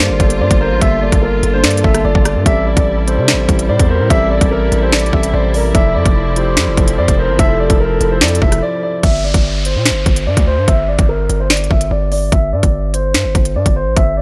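This tense, menacing drill cut opens with a dark, boxy concert grand piano carrying the melody through a low-pass filter and digital delay. A breathy, warbling flute-like synth lead with chorus sits in the background beside it, while a mellow tine electric piano and a lush, distant string section with vibrato fill out the harmony. Underneath, a half-time drill drum kit sits up front with a hard-clipped kick, sharp snare, crisp hats, rim clicks and finger snaps, all overdriven. A saturated, aggressive 808-style bass with a fast attack and decaying tail anchors the low end. After a brief break, the lead, electric piano and strings stop around 9 seconds, leaving the piano, bass and drums as an electronic downlifter sweeps through until 12.3 seconds.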